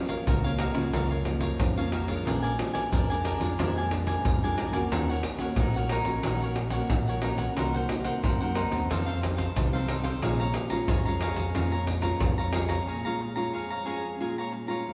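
The excerpt opens on a warm, fingerpicked nylon-string guitar with a classical touch, joined almost at once by a crisp, picked cavaquinho and an up-front percussion section of maracas, deep surdo and hard-handed pandeiro, whose vintage, band-limited tone gives the groove an old-record feel. This samba and choro piece moves at 90 BPM in a straight 4/4 in Bb minor, its mood nostalgic yet lively. At 0.3 seconds a fingered electric bass enters, bright and amped, its line shaped by an envelope filter. The harmony travels from Gbmaj7 through Bb7, Ebm7, Cm7b5 and F7 before settling on Bbm7, all set in the lingering reverb of a church or concert hall, with some lossy compression artefacts. By 12.9 seconds the bass and percussion have dropped out for a break, leaving guitar and cavaquinho to carry the final moments of this fragment cut from a longer piece.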